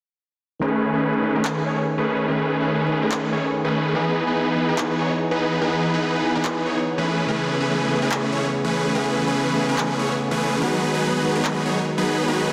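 Future bass at 144 BPM in a half-time, lightly swung feel, this bright, lush excerpt pairs huge, detuned supersaw chords carrying the riff up front through a low-pass filter sweep and tape echo with a clean tine electric piano accompaniment treated with phaser and tape echo, while overdriven, layered electronic handclaps enter at 1.4 seconds, all bathed in a lush hall reverb and a dense, heavily limited master over chords moving from B13 through Emaj7 and Amaj9 to G#m7.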